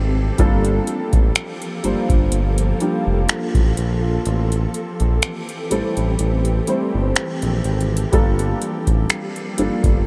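A smooth, up-front synth bass anchors this slow contemporary R&B excerpt at 62 BPM in G dorian, moving through Gm9, Am7 and back to Gm9 with a longing, moody air. A booming analog drum machine with a deep kick, metallic hats and finger snaps carries a lightly swung 16th feel, its kick dropping out from 4.3 to 8.1 seconds, while a felt-muted upright piano with analog chorus plays soft, intimate accompaniment. An ethereal, detuned pad holds sustained chords with ensemble chorus and sidechain pumping, and the dreamy mix is soaked in a huge ambient reverb.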